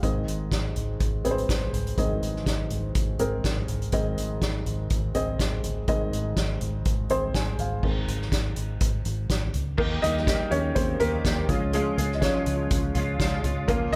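A dark, woody upright piano opens this hopeful, uplifting piano-driven pop excerpt, joined from the start by a round, foam-muted vintage electric bass and a drum kit played with soft mallets, its punchy kick and medium-tuned snare sitting in a roomy studio space. The groove moves at 123 BPM in 4/4 with a gentle swing on the sixteenths, centred on Ab. The mellow, short-sustained piano carries the accompaniment, then plays a fill and moves into a solo from 7.8 seconds. At 9.8 seconds the harmony shifts to Eb and a clean, picked electric guitar enters with a compressed riff, recorded direct and coloured by an ensemble chorus. The chords move on to Db near the close, all within a light reverb and small room ambience.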